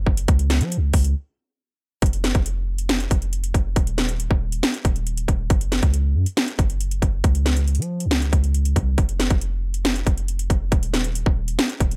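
A long sustained 808-style bass, deep and sine-pure with a fast attack and decaying tail, sits up front from the start, ranging from Eb1 to F3 beneath an eerie, dark trap groove at 138 BPM in a half-time feel. An electronic trap kit enters at 0.1 seconds, its hard-clipped kick, sharp snare and metallic hi-hats overdriven and re-recorded in a small room, pressing close in the mix. After a break from 1.2 to 2.0 seconds, the longer second section takes hold in a dry, close sound, the whole piece cut from a longer work.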